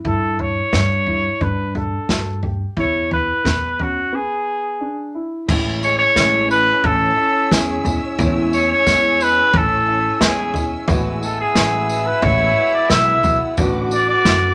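A moderate club reverb gives this indie folk excerpt a roomy sound, with a trumpet carrying the melody up front in a classical style with light vibrato. At 89 BPM in A major, it opens on a dark, woody upright piano playing short-sustained arpeggios over an acoustic drum kit with a punchy kick and bundle sticks, joined by a growly pizzicato upright bass on steel strings. A break arrives at 4.1 seconds, and at 5.5 seconds the arrangement builds: the first piano drops out as a mellow French horn enters with a soft-attack second line, a felt-muted piano adds a very quiet, intimate accompaniment, and a boxy, picked ladder-braced acoustic guitar joins. Bowed chamber strings hold expressive, smooth-topped chords in the background beside a jingly tambourine. The harmony moves from Gsus2 and E to Amaj7 and beyond, giving the music an anthemic, warm lift.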